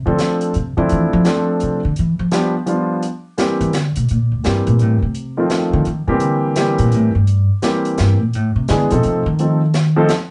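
A woody, plucked upright bass takes the solo from the very start of this sophisticated, playful small-group swing jazz waltz, backed up front by an intimate concert grand piano with deep bass, long sustain and audible action noise, while a softer acoustic drum kit of hi-hat and medium-tuned snare sits in a small room, all heard from further back in a moderately reverberant studio with a rolled-off top end.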